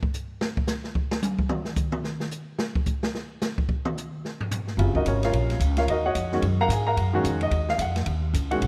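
A brisk swung 4/4 at 219 BPM opens with a solo on an open, natural-sounding jazz kit, its dark cymbals, medium-tuned snare and boomy kick heard up front in a small room across hi-hat, ride and toms. At 4.8 seconds a slightly detuned upright piano with short sustain and a woody, pizzicato upright bass on steel strings enter together over an Ebm9 chord. The piece settles into a cool, spiritual modal jazz groove in Eb dorian, softened by light reverb, until this excerpt is cut off at 8.7 seconds.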